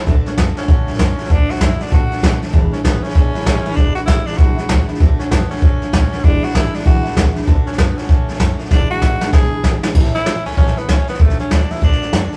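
Upbeat and rowdy, this rockabilly excerpt swings at 194 BPM as a raspy, close-miked tenor saxophone carries a gritty, scooped-note melody with vibrato over a bright dreadnought acoustic guitar with audible finger squeak, a woody, thumpy pizzicato upright bass, and an up-front brush kit with dark cymbals and a boomy kick that plays a fill from 8.7 to 10.0 seconds, all captured as a rough rehearsal-room recording with moderate reverb.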